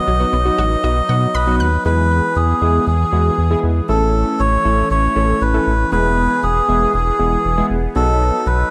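A reedy, breathy melodica opens this wistful yet upbeat synth-pop excerpt, sitting close and up front with a digital delay trailing its melody. A swirling phased analog pad holds slow-attack chords beneath it, colored by phaser and chorus. A round, deep analog bass anchors the low end with a dark sawtooth-and-sine tone, while detuned analog keys with a filter sweep and chorus fill in a decaying accompaniment. For the first 1.7 seconds, a bright analog pluck adds arpeggios in the background, its short decay smeared by chorus and digital delay. The harmony moves from B to E at 1.9 seconds, then through A and back to E before landing on B, all wrapped in light reverb and digital ambience, with lossy compression artefacts audible.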